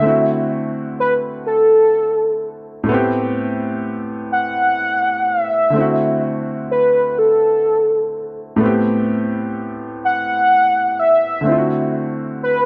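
A velvety, sawtooth-toned synth lead with chorus, slapback echo and vibrato sings the melody up front over a clear, worn concert grand piano with deep bass from the very start, together shaping a late-night, yearning R&B passage in a slow 6/8 that alternates D9 and Am9 chords within a moderate plate reverb.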